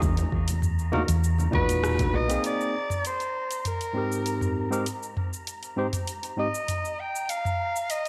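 Bathed in a lush hall reverb, this relaxed, sunny sunset chillout piece at 99 BPM in Ab lydian opens with a round, punchy hollow-body bass, a deep tape-warm electronic kick and distant, ringing congas, all gone by 2.4 s, while a smooth R&B kit of cabasa, hi-hat, rim click and toms carries on beneath an airy, breathy wind-like texture, a barky tine electric piano with delay entering at 0.9 s, and a raspy, gritty soprano saxophone solo with vibrato and delay arriving at 1.5 s.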